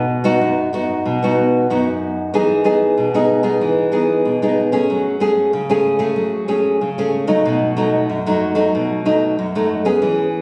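A playful, lively samba excerpt at 94 BPM features a solo nylon-string guitar, fingerpicked and up front with a warm classical tone and audible finger squeak, moving through B, Emaj7, F#madd9 and B7 over about 10.4 seconds in a large studio reverb captured by a phone in the room.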